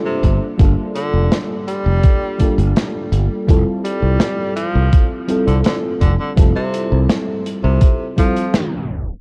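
Vaporwave with a nostalgic, melancholic air, this excerpt cut from a longer piece sets a bright, vibrato-laden tenor saxophone with scooped notes, roughened by 12-bit sampler grit and tape echo, over a soft, warbling FM electric piano bathed in lush chorus and analog delay, a growly, up-front fingered electric bass with tube saturation, a thumpy, overdriven electronic kick and an acoustic kit's hi-hat and medium-tuned snare in a pumping room, all within a dark cassette-toned production moving from Gm9 to Fmaj9 before a band accent at 8.5 seconds and a closing tape stop.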